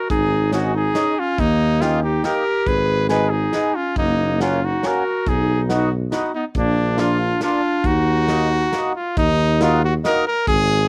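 A bright trumpet and clarinet open this jolly, bouncy alpine folk dance excerpt together, in triple time with a loose, rubato feel. The trumpet carries the melody up front in a classical style, while the close-miked clarinet plays a second line. A mellow tuba with light vibrato holds down the bass, sitting as far forward as the trumpet. An acoustic country drum kit with a natural studio-room sound keeps time on hi-hat, a medium-tuned snare and a punchy kick, and both the kit and the trumpet carry a cassette tape colouring. From 0.5 seconds a reedy, full accordion adds accompaniment through its tone chamber. The clarinet stops at 9.0 seconds, just before the opening passage returns, and the whole home cassette recording has a light touch of reverb.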